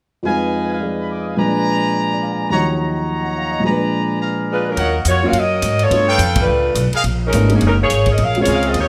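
Brassy and dramatic, this brisk big band swing clip at 211 BPM opens with a dark, mellow baby grand piano, its action noise audible, accompanying bright trumpet section stabs. At 4.5 seconds a saxophone section with light vibrato takes the melody, and by 4.8 seconds the tune settles into Eb minor as a woody, growly pizzicato upright bass and a distant, roomy drum kit of hi-hat, ride cymbal and punchy kick join in. The band hits an accent at 6.3 seconds, all set in a light reverb.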